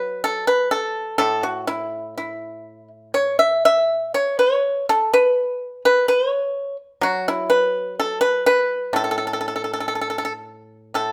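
Elegant and serene, this short passage of Chinese traditional music features a solo pipa played with fingerpicks, moving freely in rubato across a range from A2 to E5 over a 2/4 metre. The instrument sits up front with a dry, percussive attack and an acoustic, warm body, set in a single room with light reverb. Cut from a longer piece, it lasts about 11 seconds.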